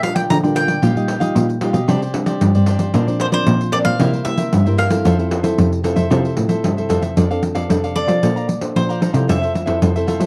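A bowed cello stands out in this playful samba and choro excerpt in F major at 114 BPM; one player carries the bass with expressive vibrato and portamento, up front in the mix. A picked, woody mandolin with doubled strings carries the melody, while a crisp cavaquinho and a dark, thumb-plucked classical nylon-string guitar with audible finger squeaks accompany, and a jingly, vintage, band-limited pandeiro sits close up. The dry, close 1970s-style studio sound feels joyful, and the mandolin takes a solo at 7.2 s before stopping at 9.8 s.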